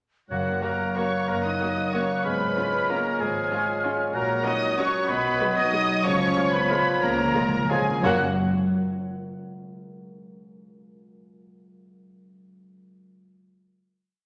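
A lush, distant violin section carries the melody of this sweeping orchestral ballroom waltz in 3/4, singing with vibrato, soft attacks and expressive portamento over a rubato pulse. A bright, ringing concert harp rocks through broken chords beneath it, while a clear oboe and a second, smoother violin section double the tune at the octave, joined in the background by a dark French horn section. An airy, mellow silver flute, a clarinet and a bassoon fill in chords in the rhythm of the tune, and a rich viola section adds after-beat chords from 0.6 seconds. Very quiet cellos mark the bass on the beats, with a close double bass section doubling the line. Hard-mallet timpani strike at the opening and return with a fill from 6.0 seconds, rolling into the festive final chord, all set in the wet reverb of a scoring stage.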